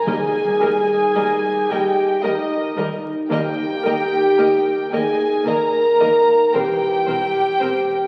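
Classical slow romantic movement in 3/4 at 56 BPM with a serene, tender rubato feel, settling into Eb major, where mellow French horns sustain up-front chords over a ringing fingerpicked harp, a warm violin section carries the melody with a second violin line in the background, dark violas, a very quiet cello section and a soft double bass section provide intimate bowed accompaniment and bass, and very quiet close timpani sound until 4.9 s, all wrapped in wet scoring-stage reverb and the crackle of a very old 78 rpm record before the harmony turns to C7/E at 6.5 s.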